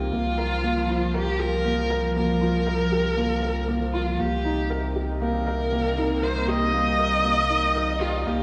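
Drenched in a long plate reverb, this dreamy, hypnotic stretch of piano and strings electronica has a cinematic pull from its first second. A rich, expressive viola carries the melody with vibrato, portamento and tape echo, while a felt-muted upright piano plays a soft, intimate riff with short sustain and its own tape echo. A lush, detuned unison pad sustains chords through chorus and phaser over a deep, round sine sub bass, moving from C7sus4 to Cm7 at 4.2 seconds.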